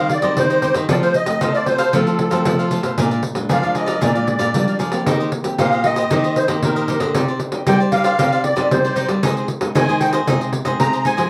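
A reedy musette accordion carries the melody from the first moment, its shimmering, smooth and dark tone sitting up front over bright, crisp picked cavaquinho and a fingerpicked classical nylon-string guitar, with a jingly pandeiro joining a tenth of a second later. This lively, joyful blend of samba and choro moves in a straight four, passing through changes such as Cm/Eb, F, Bb7, Eb6 and Cmadd9 before settling on Ab/C. A second nylon-string guitar supplies the bass in the background, its full-bodied, deep classical sound marked by audible finger squeak. The pandeiro, played with soft hands, has a vintage, band-limited character and sits close to the listener. The whole cut, taken from a longer piece, has the rough feel of a home demo, set in a small room with wet ambience.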